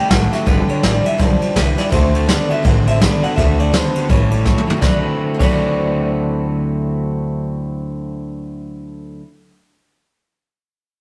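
Captured as a rough rehearsal-room take with a moderate stone-room reverb, this rowdy, retro rockabilly fragment swings at 165 BPM in D mixolydian, moving through G7, D7 and A7 before landing on D13 as a new section begins at 4.8 seconds. An up-front, edge-of-break-up electric guitar drives the riff while a second electric guitar, bright and twangy through a small old amp, carries the melody over a full-bodied, picked steel-string acoustic in the background. A woody, thumpy gut-string upright bass and a boomy brush drum kit anchor the groove; the drums play a fill at 4.5 seconds and drop out at 5.5 seconds.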